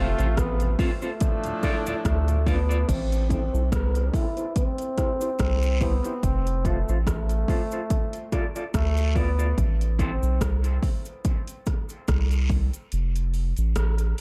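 Hypnotic and heavy, this 72 BPM dub reggae cut in A minor sets a distant, roomy trombone with scooped notes and dub echo over a round, up-front sub bass and an overdriven deep house kit with metallic hats. A slightly broken-up electric guitar accompanies until about 10 seconds, while a warm horn section and a very quiet tonewheel organ with key click fill the opening. Cabasa and guiro add echoing texture through to the end, and the kick drops out at 12.9 seconds.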